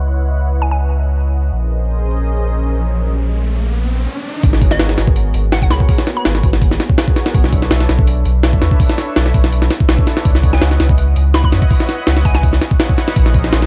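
Drum and bass in a jungle vein, this excerpt is frenetic yet atmospheric, with a dark, warm production shaded by vinyl crackle, a low-pass filter and little reverb. From the start, a lush, detuned sawtooth unison pad holds slow-attack minor eleventh chords low in the mix, its chorus warble carrying vintage 12-bit sampler grit, while a deep triangle sub bass with tube saturation sits up front. A filter sweep shapes the opening, an electronic riser enters at 2.5 seconds, and a brief stop clears the way for the drop at 4.4 seconds. There a compressed, pitched-up jungle sampler kit arrives up front, its thumpy kick, high-tuned snare and hi-hat carrying tape-like colour and studio ambience. A hollow, bouncy square-wave pluck, bright and detuned with chorus and dub echo, flickers in short melodic bursts in the background.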